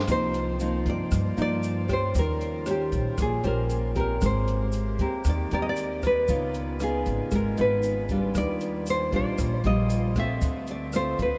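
Wistful and intimate, this short bossa nova excerpt moves at 116 BPM in C minor, set in a vast, echoing space with a huge ambient reverb. Two fingerpicked nylon-string guitars sit up front: one carries the melody in a classical manner, while a full-bodied second guitar plays the accompaniment through chords such as Cm11, Eb13, Abmaj9 and Db9. An upright bass, plucked pizzicato with a woody, thumpy tone, anchors the low end. A compact cocktail drum kit adds hi-hat, a punchy kick and rim clicks with a dark, smooth sound and a rolled-off top. In the background, a woodwind section holds tight sustained chords with light vibrato, and a grainy, mellow tube shaker adds a soft texture. The passage closes on Dm7 at 10.4 seconds, as if cut from a longer piece.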